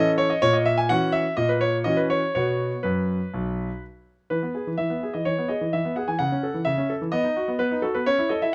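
A clear concert grand piano sits up front, its smooth, vintage tone reaching down into a deep bass, as it carries this playful, cheerful classical-period sonatina alone in a straight four-beat feel. The short cut from a longer piece moves through two sections, the second arriving at 4.3 seconds on an E chord before turning toward A and B harmonies. Close, detailed miking and light reverb frame the instrument.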